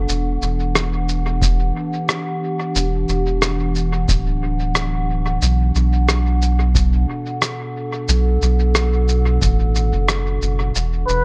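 A warbly, detuned tape-like pad with chorus and built-in reverb sustains dark Em9 and Bm7 chords over a round, soft dub sub bass, while a muffled, sampler-style electronic shaker and rim click with dub echo sits up front and a deep electronic kick drum enters in the background at 1.4 seconds, giving this spacious 90 BPM ambient dub excerpt a nostalgic, lo-fi feel before a veiled, cup-muted trumpet sounds a single B4 at 11.1 seconds.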